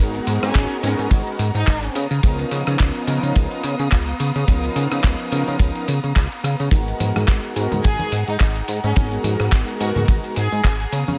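A glossy, detuned synth bass sits up front from the start, beneath brassy synth chords colored by chorus, phaser and delay and a smooth studio string section holding sustained chords, both pumping to the sidechain, while a gritty, compressed sampler-style soul kit of hi-hat, ride, rim clicks, handclaps and tambourine drives a swung, sensual nu-disco groove. A tight, airy acoustic kick punches through clearly, and the chords move from G#m9 to C#13 and back. A woody, dark chamber violin section states a short melody at 0.4 s and returns at 7.8 s with echoing delay, after ringing, low-tuned congas slip into the background at 6.7 s.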